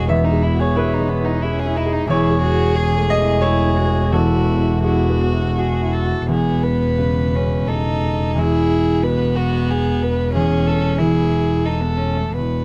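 Neoclassical piano and strings in an intimate, hopeful mood, this short excerpt moves in a rubato 3/4 at roughly 83-93 BPM, with its phrase returning at 6.3 s over gently shifting E major harmonies coloured by major sevenths and added ninths. A dark, woody solo violin carries the melody with vibrato, played sul tasto, while a rich, pure cello floats a soft-attacked second line beneath it. A warm, open baby grand piano with long sustain supplies the accompaniment, and an up-front, close double bass anchors a low E with an airy bow and light vibrato, all under a light reverb.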